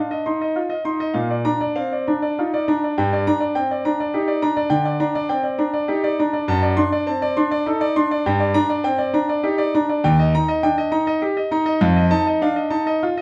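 A classical, baroque-style suite movement for solo grand piano, this radiant, dance-like passage cut from a longer piece sways in a rubato 12/8 at 67 BPM (dotted quarters), tuned to A4 = 444 Hz, with the brilliant, up-front concert grand ranging from Eb2 to C6, its deep bass and open, long-sustaining tone carrying harmonies that move from F7 through Bb, Gm, D7/F# and Eb back to F7, all set in a moderate studio reverb of 1.2 seconds within a dark, warm production.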